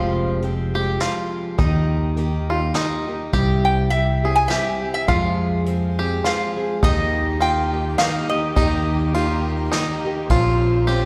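Reflective and intimate, this short acoustic folk excerpt at 103 BPM in a swung 3/4 pairs an up-front picked parlour steel-string guitar, twangy banjo arpeggios, a punchy fingered electric bass and a vintage kit played with brushes, with a nasal, metallic resonator slide guitar carrying the melody from 3.6 to 10.0 seconds and a veiled, very quiet con sordino string section adding sustained chords from 6.8 seconds, all in the long reverb of a church or concert hall, moving through chords such as Fmadd9, Eb, C and Fm before closing on Bbmadd9.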